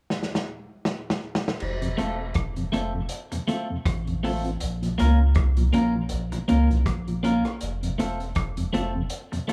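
A vintage drum kit with dark cymbals and a punchy kick opens this laid-back, uplifting roots reggae excerpt in F major at 80 BPM with a swung 16th feel, its fill giving way at 1.6 seconds to a deep, round dub sub bass, at 1.8 seconds a mellow tonewheel organ with chorus vibrato and slow rotary speaker in the background, and at 2.0 seconds a bright, twangy clean electric guitar with tape echo, moving from F to B-flat minor and back in a small, lightly reverberant room.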